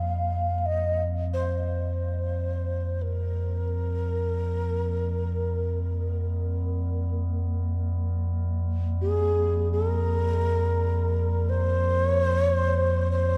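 World meditative music in free time and F minor pentatonic, this haunting 13.4-second cut from a longer piece sets a breathy, mellow xiao melody ranging from Ab4 to F5, touched with vibrato and tape echo, over an eerie, metallic drone on F2 with chorus and its own reverb, all bathed in a dark cathedral reverb.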